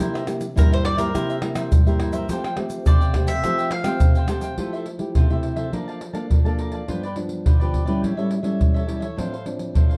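A bowl-back mandolin carries the melody from 0.6 to 4.3 seconds, its picked double strings doubled by a slapback echo. This joyful, lively fragment of samba and choro moves at 104 BPM in a straight 4/4, in F major. Beneath it, a dark, thumb-plucked nylon-string guitar sits up front with a classical touch, while a crisp, picked cavaquinho adds a quieter layer of accompaniment. A tight surdo anchors the acoustic small-room percussion of egg shaker, pandeiro and tamborim, which sounds close and present. The harmony moves from C7 and Fadd9 into a new passage at 4.6 seconds built on Fmaj9, Bbmaj7/F, G7, A7 and Dm7/A, with light reverb framing a warm, shadowed production.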